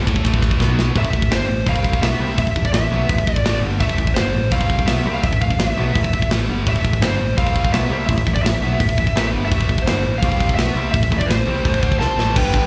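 Heard through a club PA with a touch of room reverb yet little reverb overall, this cut from a longer heavy metal piece sounds dark and epic, driving along at 168 BPM in a straight 4/4 in A minor. A tight, up-front acoustic kit with bright cymbals, a medium-tuned snare and a tight kick pushes the music, entering at 0.1 seconds, playing a drum fill at 0.6 seconds and using china, crash, ride and hi-hat. Beneath it, a bright, growly fingered bass plays direct, while a compressed distorted guitar and a scooped high-gain guitar, both with slapback echo, sit in the background playing the riff. A dark, double-tracked fuzz guitar adds weight to the riff only at the opening and again at 12.3 seconds. From 1.0 seconds a warm high-gain lead carries the melody over chords that move between Am and C5, and near the end, at 12.0 seconds, a darker second lead line with slapback echo joins as the drums play another fill.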